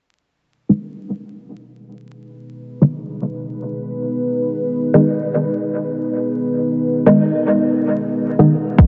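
Dub techno at 113 BPM in G# minor, this meditative, hazy passage is cut from a longer piece and rests on a single G# minor chord throughout. A filtered dub chord stab opens at 0.7 seconds, muted and full-bodied with a sawtooth filter pluck, carrying phaser, dub echo and sidechain pumping while a filter sweep moves across it for the whole stretch. From 2.4 seconds a deep, moody ambient pad joins with slow-attack sustained chords, its detuned unison sawtooth, sub octave and wave-folded ring-modulated tone softened by chorus, built-in reverb and sidechain pumping into a mellow haze. An overdriven, punchy analog kick drum lands up front only at the very end, at 8.8 seconds. A huge ambient reverb with a long tail surrounds the sound, and vinyl crackle plus a dull, rolled-off top end give it a dusty, muffled finish.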